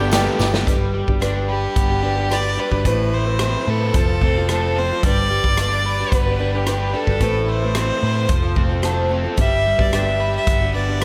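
Hopeful and warm, this folk rock piece with a heartland rock lean moves in a straight 4/4, filled out by a lush hall reverb that gives it a big arena sound. A clear, smooth fiddle carries the melody up front with light vibrato, slapback and tape echo, while a woody, boxy ladder-braced acoustic guitar with old strings picks the accompaniment. A bright, overdriven, double-tracked electric guitar plays a riff, and a round, amped hollow-body short-scale bass anchors the low end. The natural country drum kit, with a medium-tuned snare and punchy kick, comes in at 0.1 seconds and plays a fill at 0.4 seconds. In the opening moments only, a clean pedal steel guitar in the background, a barely audible, dark, floating string section and a jingly tambourine add colour. After an opening Gadd9, the harmony cycles through G, Amadd9 and F.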